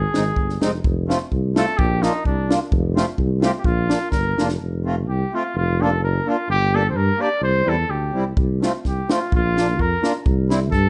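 A jolly, festive alpine folk dance opens with a warm, vintage trumpet carrying the melody up front, set in plate reverb, over a dark, smooth-topped tuba bass with light vibrato, both phrased in a classical style. At 128 BPM in 2/4, the feel swings lightly on the eighths with a touch of rubato, moving from Bb major into F major at 4.6 s. A reedy, sweet accordion with light tremolo tuning fills in the accompaniment, while a compact cocktail drum kit with a punchy kick and a high-tuned, dry snare drives the first section and closes it with a fill ending at 4.6 s. The drums drop out for the second section and return at 8.4 s, after the harmony has moved through G minor and C. The room sound is moderate and the top end is soft, suiting this short cut from a longer piece.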